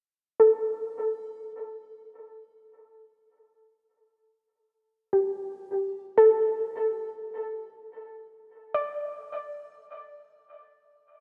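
Unmetered and floating in free time, this ambient fragment from a longer piece has a serene, weightless mood. A single soft, round synth pluck plays solo from 0.4 to 9.9 seconds, sitting up front in the mix with a dark, rounded tone and a quick, decaying attack. A subtle chorus, a touch of vintage 12-bit sampler grit and a diffuse ambient delay colour the pluck. The harmony rests on a Gsus2 chord before moving to Asus4 at 6.4 seconds. A wet plate reverb soaks the dreamy mix, leaving a long, hazy tail around the sound.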